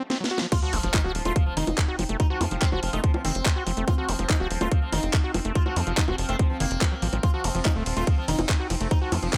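A buzzing, shimmering sitar melody laced with phaser and digital delay rides over this alien psychedelic trance at 143 BPM, as a squelchy, gritty acid bass riff with dub echo and a garage kit of cracking snare, bright hats, bongos, handclaps, ride and crash open the excerpt with a short drum fill that breaks into a drop at 0.5 s, bringing a tight, up-front electronic kick, a very quiet sub drop, a punchy sawtooth sequencer bass with tube saturation, and, from 1.5 s, a resonant overtone-sweeping drone with chorus and phaser in the background, all in a dry mix where the acid bass, sitar and drone pump to the sidechain.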